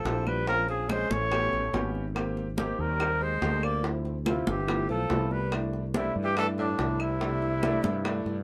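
A dark, distant trumpet with vibrato carries the melody up front in this lively, danceable Afro-Cuban jazz excerpt, while a breathy tenor saxophone with scooped notes sings a second line in the background. A growly fretless electric bass sits forward, and an intimate upright piano with audible action noise voices rich chords such as Bbm7, Abmaj7 and C69. Tight, high-tuned bongos, ringing congas and woody claves drive the percussion under light reverb.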